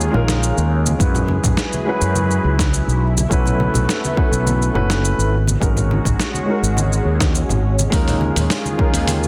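This smooth, wistful sunset chillout excerpt opens with a dark, mellow grand piano playing accompaniment through a delay, over a thick, detuned pad of sawtooth and square-wave unison voices with a slow attack, treated with chorus and phaser. A growly fretless electric bass sits up front with a lush chorus, while a gritty, compressed sampler-style kit supplies hi-hat, shaker and a medium-tuned snare. Bright congas played with soft hands join in the background at 0.1 s, and a punchy, layered electronic kick arrives at 1.0 s. The harmony drifts through suspended ninth chords, Eb9sus4, Gb9sus4, B9sus4 and Ab9sus4, before returning to Eb9sus4. Light reverb and digital ambience frame a dense, heavily limited modern master.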